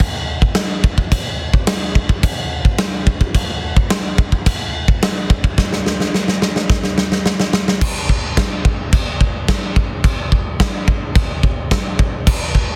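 This is a dense, heavily limited modern master with little reverb, and the big rock drum kit sits up front in it. It is an epic, aggressive metal passage in a straight 4/4 feel, cut from a longer piece, with the acoustic kit playing on its own from start to finish. The kit has a natural, big-room character, with a punchy kick, a medium-tuned snare, and bright crash and china cymbals. A drum fill runs from 5.6 to 7.8 seconds and leads into a new section that carries the passage to its close near 12.8 seconds.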